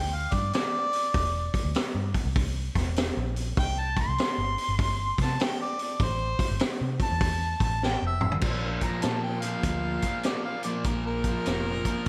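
A mellow, overdriven harmonica opens this smoky, heavy blues rock excerpt with a jazz-style solo full of light vibrato and scooped notes over a round, foam-muted picked bass. A vintage kit enters at 0.3 seconds with a punchy kick, high-tuned snare and dark cymbals, swinging at 99 BPM over Gm and C, and a drum fill at 7.8 seconds leads into the next section. At 8.4 seconds a double-tracked, up-front overdriven guitar riff arrives on Bb5, giving the southern rock power trio a heavier edge under light reverb.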